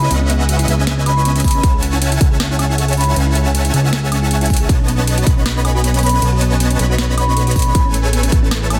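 Huge, detuned supersaw chords with lush chorus, an airy, ringing vibraphone melody, a round, tine-like thumb-piano-like synth pluck playing arpeggios and a fat, saturated analog bass all pump together from the first moment of this dreamy, bittersweet half-time future bass excerpt, as a trap kit with a sharp snare, metallic hats and an overdriven edge joins, and a punchy, layered electronic kick lands up front from 1.4 seconds in a dense, heavily limited mix with light digital reverb.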